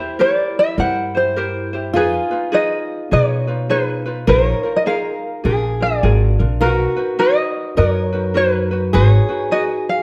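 A bright, thumb-plucked tenor ukulele carries the melody up front in this languid, sunny Hawaiian excerpt, moving at 103 BPM in 4/4 with a swung eighth-note feel. Beneath it, a fingerpicked old ladder-braced acoustic guitar plays a second line, its old strings giving a dark, woody tone. A second ukulele, light and warm, fills in the accompaniment. A thumpy pizzicato upright bass on steel strings sits up front from 0.8 to 9.2 seconds. The harmony drifts from C7/E through Fm7b5 and a suspended Bb7 that resolves to Bb7 before settling on Bmaj7 and Abm7, all within a moderate recital hall reverb.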